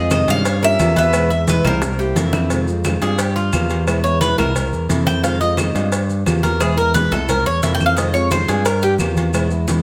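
Latin music in the Cuban son and guajira style, this sultry, warm excerpt moves at 176 BPM in a straight 4/4, cut from a longer piece in F harmonic minor. Two up-front Cuban tres parts carry the top: one plays a short melody over the opening 2.3 seconds with a quiet, dark, fingerpicked nylon-string guitar beneath it, while the other spins bright, metallic arpeggios on doubled strings until 8.9 seconds. A boxy, parlour-style plugged-in steel-string acoustic guitar fingerpicks the accompaniment, and a modern picked electric bass sits direct and up front in the low register. The percussion is layered: ringing, low-tuned congas in the background, round cowbell and bongos struck with hard hands, woody claves set distant in a large room, and grainy, compressed maracas. After a drum fill, a Cuban tres solo takes over at 2.5 seconds and runs to the end as the harmony cycles through Gm7b5, E, C7 and Fm7. 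A moderate large studio reverb gives the whole a spacious finish.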